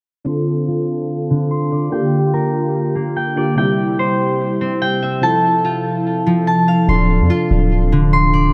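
A half-time 4/4 pulse at 145 BPM drives this eerie, menacing hip hop excerpt in D minor, tuned to A4 = 438 Hz, where bright, fingerpicked concert harp arpeggios ring through delay and a low-pass filter beside warbling, detuned lo-fi synth keys with a chorused, nostalgic glow, moving over a filter sweep and a Dm7, Bb6, C, Fmaj7 progression until a deep, sine-toned 808-style bass arrives at 6.9 seconds, the whole set in light reverb and studio ambience.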